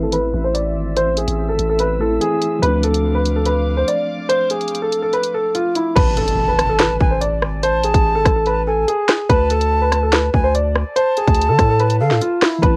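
This dark, tense drill excerpt rides a half-time feel at 144 BPM in A harmonic minor, with an electronic drum kit up front: a hard-clipped kick, sharp snare, hi-hat, rim click and crash cymbal, all given a cassette tape colour, while the kick drops out from 5.1 to 6.0 seconds. Underneath, a deep, sine-toned 808-style bass with a fast attack and long decay holds the low end throughout. A grand piano with long sustain carries the melody through low-pass filtering and tape grit, joined at first by a mellow, clean tine electric piano heard through its built-in speakers and a soft, floating string section sitting in the background, both filtered. The opening six seconds move from Am to Dm7 under a filter sweep, and at 6.0 seconds the strings and electric piano fall away as a very quiet electronic impact marks the shift to Amaj7(no3)/G# and then D5. A breathy, close-miked jazz flute with vibrato and tongued notes enters there as a second line, trailed by tape echo, and the whole excerpt sits in a light reverb with the character of a home cassette recording.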